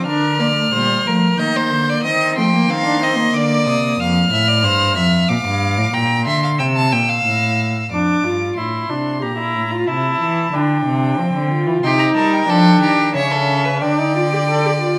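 A moderate recital-hall reverb, with a decay of about 1.8 seconds, surrounds this string quartet fragment cut from a longer piece: a serious, contemplative baroque-style fugue in Bb major, tuned to A4 = 445 Hz, moving at 92 BPM in a straight 3/4. The first violin carries the melody high above the ensemble with a focused, smooth-topped tone and vibrato, while the second violin, bowed and close-up, plays a second line beneath it. A dark, woody viola sits distant in the blend as accompaniment, dropping out at 4.0 seconds and returning at 7.9 seconds, when the second section begins. The rich cello anchors the bass up front, its expressive playing coloured by vibrato and portamento. The second violin falls out at 7.9 seconds and rejoins at 11.8 seconds, as the harmony moves through Am7b5/C and A/C# toward a closing Dsus4.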